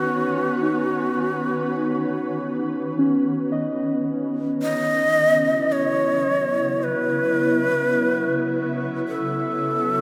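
A vast, echoing cathedral reverb surrounds this melancholic, serene ambient excerpt at a slow 53 BPM, where a breathy, bamboo-toned shakuhachi carries the melody up front with vibrato and an unsteady, chiffy edge, trailed by a diffuse delay. Alongside it, a shimmering, ethereal pad with an octave-up shimmer and detuned, granular sustain holds the chords, moving from Bsus2 to F#5 at 4.6 seconds. Muted, felt-like synth keys with a warbling, vintage character play soft arpeggios in the background until 6.9 seconds.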